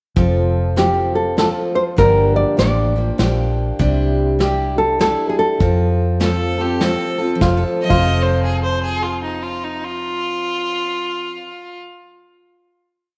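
A fingerpicked nylon-string guitar carries the melody up front, its deep classical tone shaping short, song-like motifs over an easygoing, sunny honky-tonk and classic country waltz with a gentle swing. Underneath, a bright steel-string dreadnought strums full-bodied open chord shapes in a folk style, while a dark, foam-muted electric bass plays round, punchy root-and-fifth lines with walk-ups. A soft brush kit sits distant and roomy in a small space, with a medium-tuned snare, punchy kick, hi-hat and crash holding the 3/4 groove until it drops out at 8.0 seconds. A clear, earthy bowed fiddle enters at 6.2 seconds with light vibrato and bluesy licks, carrying on as the band settles onto a final chord from 7.4 seconds. The whole short piece is bathed in a moderate echo-chamber reverb with a small-room ambience and a soft, rolled-off top end.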